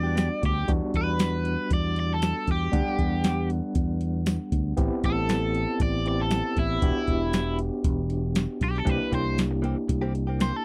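A short cut from a smoky, mournful straight-eighth soul blues opens with a clean, compressed guitar stab over a round fingered bass and a barky, gritty tine electric piano with fast tremolo, before a soft vintage rhythm box with deep kick, crisp snare, metallic hats and tambourine joins at 0.2 seconds. From 0.7 seconds a bright, cranked stack guitar plays an overdriven solo with phaser up front over Em7, Am7 and C7 changes, and the clean guitar returns with stabs at 8.8 seconds. The sound is dry and close, like a 1970s studio recording.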